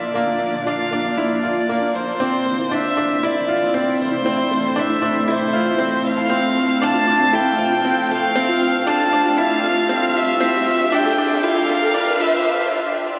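Piano and strings electronica in F major at 117 BPM, this luminous, tender excerpt builds steadily as a dark, woody violin with vibrato carries the melody up front under diffuse delay, while a bright grand piano with audible action noise and long sustain plays a riff over a cloudy, evolving granular pad and a very quiet, round sub bass. Soft pluck arpeggios with analog chorus sit in the background under a filter sweep, an electronic riser enters at 9.8 seconds, and the parts drop away into a brief break at 12.5 seconds. The whole dreamy mix is soaked in cathedral reverb with a long 6.2-second tail, moving through Bb, Am, F and Dmadd9.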